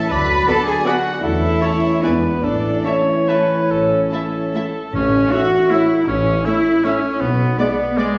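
Heard in a reverberant concert hall with a wet, lingering tail, this short passage from a longer orchestral ballroom waltz moves in a flexible, rubato three-time with a sweeping, festive air. A very quiet, woody violin section carries the melody with vibrato and a soft sul tasto touch, while a clear cor anglais sings a solo second line and a mellow, hollow flute adds an airy, tongued counterline in the background until 4.6 seconds. A second violin section, floating and distant, enters at 0.5 seconds with a pure, rich line in the upper register, and the lush violas fill in the accompaniment beneath. Distant French horns and a tight, roomy trombone section hold sustained chords, and the bass is anchored by a warm cello section and a close, dark double bass section, both bowed softly. From 4.9 seconds the second section brings in a mellow tuba, a brief stroke of timpani on medium mallets, and shortly after, a tight trumpet section adding clear, lightly vibrato stabs in the background.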